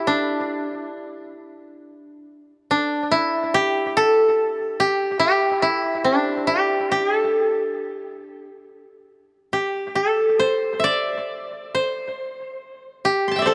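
A solo koto, plucked with fingerpicks, sits up front and carries this calm, austere passage of Japanese chamber music from its first moment to the cut at 13.5 seconds. Its tone is woody and dry at the source, moving between D4 and C6 within a D suspended pentatonic scale. The pulse is nominally 70 BPM in 4/4, yet the phrasing stretches and relaxes freely in rubato. An analog delay trails the koto, and a moderate plate reverb with a 3.0-second decay gives the mix an echo-heavy, spacious atmosphere. The fragment is lifted from a longer piece, so it presents a single unhurried section that lets each plucked note hang in the air.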